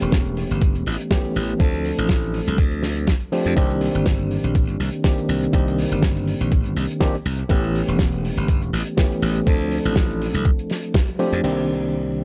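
A thumpy, overdriven electronic kick sits up front in this sleek, groovy nu-disco excerpt, its sampler punch roughening in a small room as it drives a lightly swung 4/4 pulse. Beneath it, a bright, growly slap bass and a reedy, gritty electric piano, pushed through a combo amp with harmonic tremolo, sidechain pumping and tape echo, cycle through A7, Dm7 and Cm9. A damped 70s kit adds a fat snare, hi-hat and dark crash cymbals, and the band hits an accent at 10.9 seconds, all within a dry, hardware-recorded sound.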